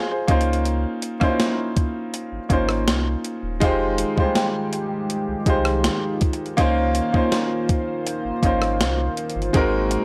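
Contemporary R&B at 81 BPM in 4/4 with a straight feel, this short excerpt carries a longing, late-night mood over chords moving from Dbmaj13 to Fm9 and back before landing on Ab9. An intimate baby grand piano sits up front from the start, its short sustain and audible action noise giving the accompaniment a close, natural presence. A gated 80s digital drum machine enters at 0.3 seconds with a thumpy kick, hi-hat, rim click and a gated reverb snare, sounding sampler-style and tape-warm, alongside a deep, round sine sub bass that holds mellow sustained notes. A chiming, inharmonic FM synth chime rings in the background with ensemble chorus, phaser, tremolo and analog delay until 6.9 seconds, while a dark, shimmering pulse-width pad joins at 3.6 seconds with slow-attack sustained chords, phaser and sidechain pumping. The overall sound is dry and gritty, with little reverb, like a hardware recording.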